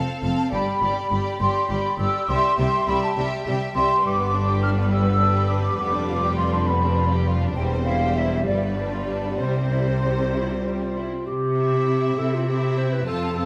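Graceful and spirited, this brief cut from a quick classical-period orchestral movement in C major sways in a rubato 6/8 at 68 BPM, as a rich, vibrato-laden violin section carries the melody over a second violin line, lush background violas, cellos and double basses (the basses dropping out at 11.1 s), while an airy, crisp-attacked flute section adds a second line until 11.0 s and a dark, distant solo clarinet enters up front at 10.3 s, all set in a moderate scoring-stage reverb.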